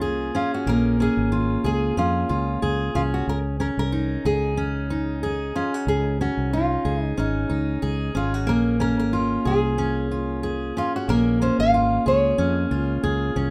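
A gently swung 92 BPM groove in 4/4 carries this reflective, tender acoustic pop excerpt in Bb minor, where a classical nylon-string guitar sings the melody with audible finger squeak over a full-bodied, jumbo-sized fingerpicked steel-string accompaniment and a dark, round fretless electric bass sitting up front, all set in light reverb as the chords move from Bbm7 to Dbsus2 at 3.3 seconds and back to Bbm7 at 8.5 seconds.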